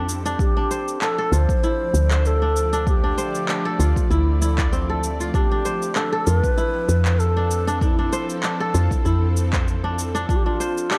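A round, woody FM bass sits up front with a punchy, overdriven electronic kick in this earthy, hypnotic organic downtempo cut at 97 BPM in D minor on lightly swung 16ths, where an airy, close-miked bass bansuri with tape echo carries the melody over crisp, ringing kora arpeggios with delay, a tense, detuned string-like drone that pumps against the sidechain, and electronic cabasa and handclaps with their own overdrive, as the harmony moves from Dm7 to Fmaj7 at 5.3 seconds and back at 10.3 seconds in a dark, lightly reverberant mix.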